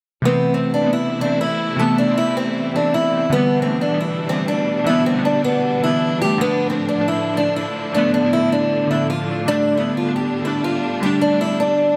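Glassy digital keys with chorus open this dark, hard-hitting half-time hip hop excerpt in A minor at 156 BPM, joined at 0.3 s by an up-front, bright, boxy fingerpicked archtop guitar carrying the delayed melody and a distant, lush bowed string section holding sustained chords with vibrato through Am, Em7, Dm and Gsus2 in a small, lightly reverberant room.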